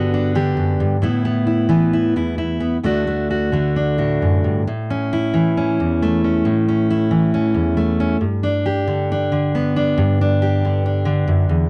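Hopeful and gentle, this short folk piece for solo fingerpicked steel-string acoustic guitar moves at a loose, rubato 68 BPM in 4/4, cut from a longer work. The jumbo guitar sounds full-bodied and up front in a dry, close 1970s-style studio room, ranging from D2 to G4 as it passes through G, Asus2 and D before settling on A at 4.7 seconds and returning to G at 8.2 seconds.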